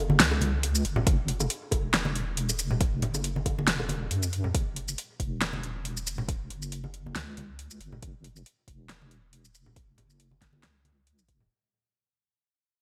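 Bright 1980s-style digital production bathed in lush hall reverb frames this cavernous, heavy, half-time deep dubstep fragment, which fades out throughout: a dark, compressed sine-and-triangle wobble bass with chorus sits up front, close acoustic congas and bongos carry dub echo, a tape-warmed deep house kit adds a fat snare, metallic hi-hats and shaker, and a layered electronic kick joins at 1.1 seconds.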